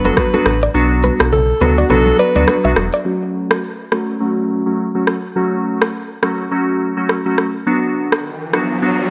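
Sultry and hypnotic, this afrobeats excerpt moves at 104 BPM in 4/4 with a swung sixteenth-note feel, circling from B minor to F-sharp minor and back. A breathy alto saxophone with vibrato and analog delay carries a pop-style solo melody, while a direct-recorded, clean electric guitar picks a bright, compressed riff, also through analog delay. Underneath, a full sine sub bass with an added octave sits up front, and soft-handed congas with a thin-skinned sound murmur in the background; saxophone, guitar, bass and congas all fall away around the 3.1-second change into the second section. Glassy digital keys with chorus play throughout, and from 3.1 seconds a filter sweep moves over them. The produced afro-pop kit of deep kick, rim click and shaker carries a vintage 12-bit sampler grit, its kick dropping out from 0.7 seconds until that same change. An electronic riser enters at 8.0 seconds, and the whole mix has a dry, gritty hardware character with transformer saturation and only light reverb.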